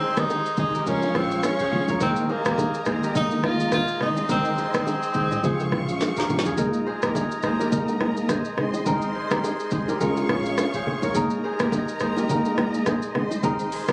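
Romantic and joyful, this afrobeats fragment is cut from a longer piece and carries a gentle swing. A breathy tenor saxophone sits up front with the melody, its subtone, vibrato and scooped notes touched with delay, before falling away at 5.9 seconds. Beneath it, a crisp, ringing kora riff with its own delay and a mellow tine electric piano weave through a cycle of Ab, Db and Ebsus4. Lush bowed strings hold sustained chords with expressive portamento. Meanwhile, an afro-pop drum kit with a deep kick, woody snare, metallic hats and vintage sampler grit plays a fill just before the second section starts at 6.6 seconds. Soft-handed bongos and congas and a boomy, clean 808-style bass stay in the background, and the whole performance sounds captured on a phone in a room with club reverb.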